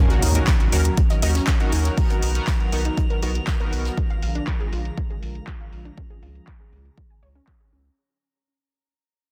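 A punchy, overdriven electronic kick and a layered deep house kit with metallic hats and handclaps drive this straight 4/4 progressive house excerpt, joined until about 4.0 s by a very quiet brushed jazz kit. A round, dark analog bass sits up front beneath bright detuned unison-pluck arpeggios and glossy, retro polysynth stabs that stop near 3.9 s, while a smooth, chorused analog pad holds sustained chords in the background over an Ebm7, Bmaj7, Bb7, Db progression. A calm, glassy texture of drifting overtones enters at 0.9 s, a faint impact opens the clip, filter sweeps move across the drums, pluck and pad, and the whole bittersweet, emotional passage fades out under a dense, heavily limited master.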